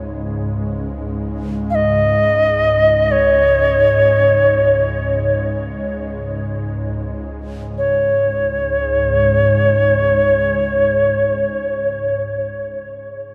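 This is world meditation music, calm and spacious, unfolding in free time. An ethereal pad holds a low drone from the opening, its detuned sawtooth and triangle layers blended in unison and softened by ensemble chorus, built-in reverb, a slow attack and a long release into a mellow bed that sits up front. At 1.7 s a Native American-style cedar flute enters, close-miked and up front, its reedy, woody tone carrying a crisp chiff and vibrato, with delay trailing its line. The flute sings in a high register above the drone, and the music moves into a new section at 7.8 s. The mix is soaked in a huge ambient reverb with a long tail, giving a dreamy sense of vast space, and the recording is cut from a longer piece.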